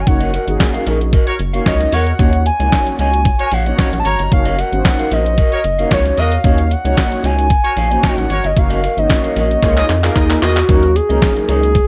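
Slick and danceable, this early-eighties boogie funk cut moves at 113 BPM in a straight 4/4, set in Eb minor over a loop of Gb6 and Ebm7 chords that turns to Db69 near the end. A detuned 8-bit drum machine sits up front with handclaps, hi-hat, a thumpy kick and a medium-tuned snare, its sampler-style hits given a tape-warm tint and gated reverb, and it drops a fill from 9.6 to 10.7 seconds. Beside it, a rubbery square-wave bass bounces with a resonant filter pluck, saturated and dark. A hollow, woody synth lead carries the melody with soft vibrato and chorus, while mellow synth brass fills in round, detuned chords with an evolving filter sweep. Deeper in the mix, a clean, fingered electric guitar plays a riff through lush chorus, and a clear, tight horn section with light vibrato adds a distant, roomy second line from 1.3 to 10.6 seconds. The overall room is dry, and the piece is cut from a longer track.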